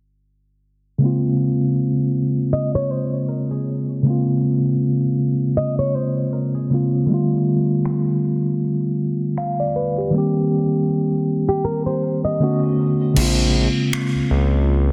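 A mellow, clean tine electric piano opens this moody, late-night contemporary R&B excerpt at 79 BPM in Bb dorian with a 16th-note swing, joined at 2.5 seconds by fingerpicked flamenco guitar arpeggios, acoustic and warm with audible finger squeak and delay, then at 7.9 seconds by an electronic trap kit of crash cymbal, finger snaps and a softly clipped snare, while a filter sweep runs through the opening stretch over Bbm7, G7, Cm7 and Bm7 chords until a smooth sawtooth and square-wave synth bass with a moving notch arrives up front at 13.2 seconds as the kick is muted, all within a dense, heavily limited, low-passed mix carrying light reverb and a faint mains hum.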